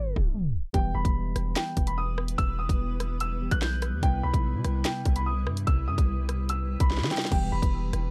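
Drill hip hop in E harmonic minor at 146 BPM with a half-time feel, this ominous, dark excerpt opens on a tape stop before a dark, boxy concert grand piano with audible action noise carries the melody through tape echo over a mellow tine electric piano in the background, a punchy, heavy sine 808 bass with a noise layer sitting up front, a produced drill kit of hard-clipped kick, sharp snare, hi-hat, finger snaps, rim click and crash with a fill at 6.9 seconds, and a cloudy, evolving granular pad with its own reverb entering at 1.8 seconds, all in a dry mix moving between Cmaj7 and Em.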